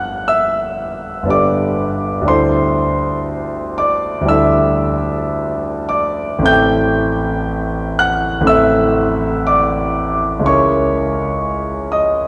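A clear concert grand piano opens this hazy, luminous fragment of impressionist classical solo piano, drifting in rubato 4/4 at around 50-63 BPM through Gadd9, D9sus4, Am7 and C#m6 chords across a range from G1 to G6, its deep bass and long sustain sitting up front within a lingering cathedral reverb of a church or concert hall.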